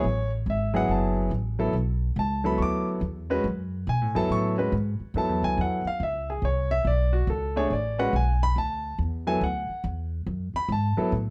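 Piano and upright bass begin together in a swinging, late-night jazz piano trio passage in F# minor, cut from a longer piece and moving at 141 BPM in 4/4 with a 65% swing on the eighth notes. The grand piano carries the melody as a solo, its tone clear and intimate, with the soft clatter of its action audible and a natural, up-front presence. Beneath it, the pizzicato upright bass sounds woody, growly and thumpy on steel strings, sitting close in the mix. The harmony rocks between F#m7 and Bm7 before settling on F#m at 10.3 seconds, with the piano stopping at 11.1 seconds just ahead of the bass. Light reverb and a dark, warm production give the piece a cozy after-hours glow, and the instruments are tuned slightly low, to A4 = 438 Hz.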